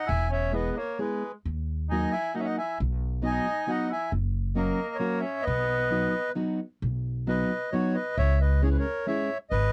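A reedy, dark accordion opens this charming, whirling musette waltz in a loose rubato, alongside a mellow, distant cor anglais on a classical-style second line and an up-front, woody pizzicato upright bass. From 0.5 seconds a full-bodied, fingerpicked jumbo steel-string acoustic guitar adds accompaniment, while the cor anglais drops out at 6.3 seconds, shortly before the opening section starts again at 6.8 seconds. The dry, close 1970s-style studio sound keeps the accordion, bass and guitar intimate in this brief cut from a longer piece.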